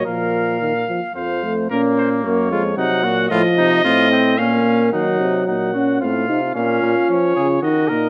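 A clear trumpet carries the melody from the first moment, joined at once by a warm second trumpet, a mellow euphonium accompaniment and an up-front, bright bass trombone, all four playing with light vibrato in a classical style. This serious, driving imitative canzona for brass ensemble moves in triple time through minor-key harmony, with its opening idea returning at 4.9 seconds. Close, detailed microphones capture the players in a moderate recital hall reverb, and the lead trumpet and bass trombone carry a vintage colour in this passage cut from a longer piece.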